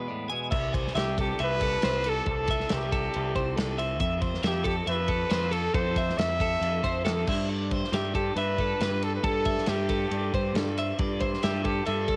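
Restless and intricate, this math rock and midwest emo passage at 138 BPM opens with a bright, twangy electric guitar that drops out at 1.0 seconds, while a compressed twelve-string electric guitar spins clean arpeggios through tape echo, an up-front fuzz bass and a loose indie drum kit with dark cymbals and a medium-tuned snare come in at 0.5 seconds, and a warm, close-miked trumpet with light vibrato carries a punchy pop-style melody from 1.0 seconds over C6, Fmaj7 and Gsus2 chords, captured as a home cassette recording with light reverb.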